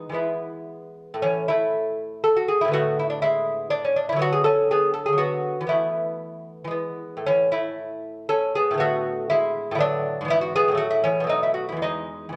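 In a rubato 3/4 lilt between 108 and 125 BPM, this flowing, serene baroque-style dance in A major features a solo lute, fingerpicked on gut double strings with some octave-doubled courses, whose mellow, delicate tone sits up front throughout this 12.4-second excerpt of a longer piece, framed by a dark production and a moderate recital-hall reverb.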